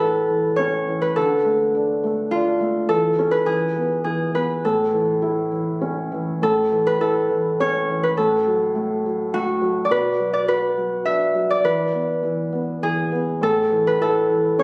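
In a gentle three-beat sway, this tender children's lullaby sets a ringing concert harp melody up front over the soft, mellow chords of a felt-muted upright piano, both playing together from start to finish and wrapped in a moderate recital-hall reverb with the compressed sound of a phone in the room, as the phrase repeats once before the clip cuts off mid-piece at 14.6 seconds.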